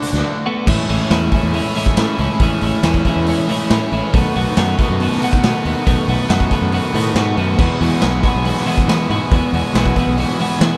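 A straight rock feel in common time anchors this short indie rock clip, lifted from a longer piece, with a wistful yet carefree mood. The garage drum kit sits up front, its punchy kick, medium-tuned snare, hi-hat and crash sounding gritty and saturated in a bright stone room that pumps with the groove. A clean, twangy twelve-string electric guitar plays a compressed, picked riff bathed in spring reverb, while a raw, overdriven guitar also plays a riff through lush chorus and tape echo a little further back. Underneath, a warm fingered bass adds punchy fuzz, entering at 0.1 seconds and playing until 10.7 seconds. The harmony drifts from D6 to Amaj7, then B7 and Eadd9, and the overall mix stays fairly dry and close.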